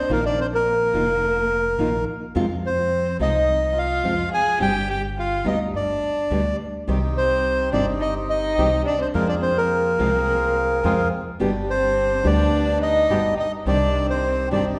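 Dramatic and sultry, this tango excerpt in C minor moves at 106 BPM with a rubato feel, its reedy bandoneon melody sitting up front while a dark, bowed solo violin adds an expressive second line with vibrato and portamento. A fingerpicked nylon-string guitar with audible finger squeak and a woody pizzicato upright bass carry the accompaniment, and at 6.9 s a second, smooth bandoneon joins with stabs. The ensemble sits in the lush reverb of a recital hall as the chords move through Fm and G back to Cm.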